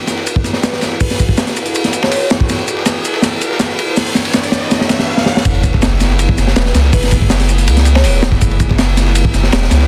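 Drum and bass with a jungle edge at 162 BPM in F# minor, this nostalgic, dark excerpt sets an airy, breathy chorused pad over a crunchy, punchy breakbeat kit up front and a gritty, overdriven sampler-style kit in the background, while a bell-like FM electric piano with tremolo and dub echo sparkles briefly and a riser and sub drop build toward the drop at 5.5 seconds, where a deep, round dub sub bass enters in a dense, heavily limited mix.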